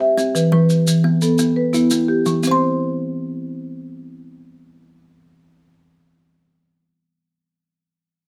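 Southern African traditional music in a mbira-style interlocking cycle, this short, rippling fragment moves at 116 BPM in a straight 12/8 and opens on E minor. A round, mellow marimba played with soft mallets sits up front with rosewood-bar arpeggios spanning E3 to C6, while a quieter kalimba shares the same range with bright, ringing thumbnail plucks from its hollow box. Grainy, saturated maracas join at 0.2 seconds and stop at 2.6 seconds, shortly after the harmony drops away at 2.4 seconds, with everything captured dry and close in fine detail.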